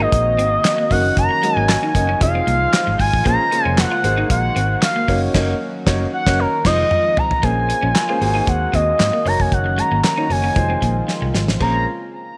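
Set in a light studio reverb, this short cut from a longer early-eighties boogie funk piece moves at 115 BPM in Bb minor with a danceable, late-night mood, cycling through Ab9, Gb6, Fm7 and Bbm9. Up front, a smooth sawtooth-and-triangle lead sings the melody with vibrato, portamento, chorus and tape echo, over a dry, polished 70s drum kit with a fat snare, tight kick, dark cymbals and handclaps, and a round, punchy foam-muted fingered bass. A dark, mellow grand piano adds accompaniment while a shimmering, retro pulse-width pad and a slightly broken-up, compressed picked guitar riff sit in the background, with a band accent from 5.3 s and drum fills at 6.4 s and 11.1 s.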